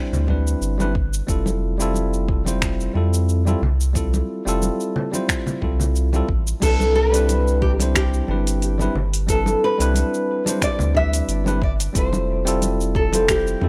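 Swung sixteenths at 90 BPM in 4/4 set a relaxed, smooth sunset chillout groove in C major, where a deep, tape-warm electronic kick and a layered deep house kit of cabasa, crash cymbal, finger snaps and metallic hi-hats sit under distant, band-limited congas, while a round, dark analog bass holds the low end up front and a bell-like, clean tine electric piano with analog delay shifts between Cmaj9 and Fmaj9 before a fingerpicked classical nylon-string guitar, also touched with analog delay, enters with the melody at 6.6 seconds, all captured in a dry, gritty hardware recording with a digital ambience in this short section cut from a longer piece.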